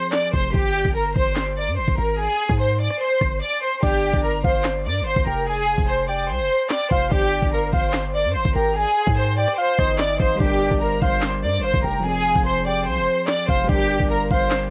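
A lush, bowed violin section leads this tense, cold drill excerpt, its vibrato and portamento giving the melody an expressive edge while a low-pass filter and cassette tape colour make it sound distant yet still up front. Underneath, a half-time groove at 146 BPM in G phrygian, tuned to A4 = 443 Hz, comes from an electronic drum kit with a knocking kick, sharp snare, crisp hats, handclaps, rim clicks and crash cymbal, also run through cassette tape. A punchy, heavy 808-style bass joins almost from the start, its sine tone topped with a noise layer and a fast attack that decays, as the harmony shifts between Fm and Gm. After a brief break, a soft, round synth lead enters at 3.8 seconds as a second line, detuned and layered with a sub octave, its dark sustained tone thickened by chorus and tape echo. A clean, direct tine electric piano, softened by a low-pass filter, is heard only in a short touch at the opening and again from 10.4 seconds. 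The dry home cassette recording, with little reverb, keeps the whole cut close.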